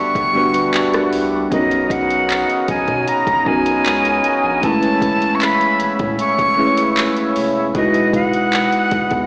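Smooth and dreamy, this contemporary R&B excerpt moves at 77 BPM in B major, with a breathy, chiffy jazz flute carrying the melody through digital delay over bell-like tine electric piano and mellow, close-miked accordion chords, while an electronic drum kit with a soft kick, metallic hats, handclaps and rim clicks enters at 0.2 seconds and a thick, saturated sub bass follows at 0.3 seconds, all heard through a big sound system in a bare room with large studio reverb and an AM radio tint as the harmony drifts from Gmaj9 through Bmaj9 and Amaj9 to Emaj9.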